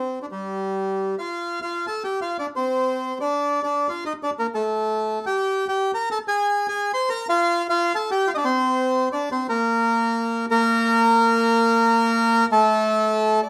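A solo bandoneon, reedy and dark, sits close and up front in this short tango excerpt cut from a longer piece, its sound full and dry on the instrument itself while the studio around it adds a wet reverb. The mood is melancholic and sultry, set in 3/4 at 178 BPM with a rubato feel, and tuned to A4 = 435 Hz. The bandoneon ranges from G3 to C6, opening with a brief unaccompanied passage before chords begin at 1.4 seconds. From there the harmony moves through F, Csus2, Dm, Gmadd9/A, Gmadd9, Ab and Dmadd11 before returning to Csus2. At 9.5 seconds the chords fall away again, and the closing passage carries the fragment to its cut at 13.5 seconds.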